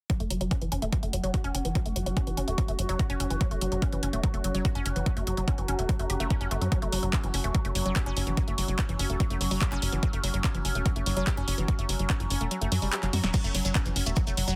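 A straight 4/4 psychedelic trance groove drives at 145 BPM in F# minor, built on a punchy, layered electronic kick sitting up front and a techno kit of snare, handclaps, tape-warm hi-hats, toms and crash cymbal. Beneath it a tight sequencer bass in sawtooth, square and triangle tones gives a dark, decaying filter pluck, while a woody, wave-folded pluck riff with a noise layer and ring modulation runs through chorus, digital delay and sidechain pumping. An overtone-sweeping drone holds sustained chords with resonant, shifting harmonics, and from 2.1 seconds a deep, moody ambient pad with a sub octave hovers in the background, both pumping against the kick under chorus and built-in reverb. The kick drops out from 12.5 seconds, a drum fill arrives at 13.1 seconds, and the drop lands at 13.3 seconds, where grainy, mellow acoustic maracas join close and dry at the back. This psychedelic, driving cut from a longer piece is set in digital ambience with a dense, heavily limited modern master, over an F#5 chord.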